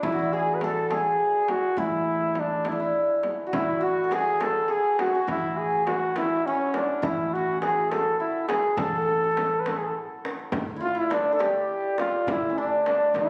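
Passionate and festive, this Persian modal piece in A dastgah mahur moves at 69 BPM in a straight 6/8, led up front by a bucket-muted trumpet playing a jazz-style solo that is veiled and raspy with light vibrato, scooped notes and a growling edge, over a shimmering, ringing hammered santur second line, a woody, thumpy pizzicato upright bass, a soft-handed frame drum and a deep tombak that joins in the background at 3.5 s, captured on a phone in a moderate recital-hall reverb, with a new section arriving at 10.5 s in this fragment cut from a longer piece.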